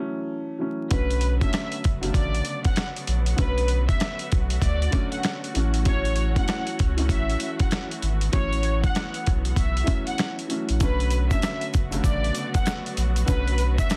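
Boom-bap hip-hop at 97 BPM in B minor, moody and gritty, with a swung 16th-note feel. A dark, boxy grand piano colored by cassette tape opens alone, and at 0.9 seconds a dusty sampler-style drum kit with a thumpy kick, a round sine sub bass, a lush bowed violin section carrying the melody with vibrato and tape echo, and a veiled, con sordino string section holding sustained chords all enter as the harmony moves between F#m7 and Bm7. A grainy tube shaker slips in at 10.8 seconds, and the mix is dry and densely limited, with vinyl crackle over this short cut from a longer piece.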